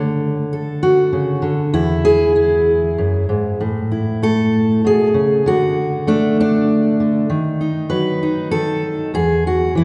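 A fingerpicked steel-string acoustic guitar with a full-bodied jumbo tone plays alone and up front in this pastoral folk excerpt, moving at 98 BPM in a straight 3/4 in A major. Its chords pass from D and E into A, D, B7/D# and back to E, with a second section arriving at 3.6 seconds. A wet church reverb with a long tail surrounds the guitar, and the sound has a soft, rounded top, as if heard in a church or concert hall.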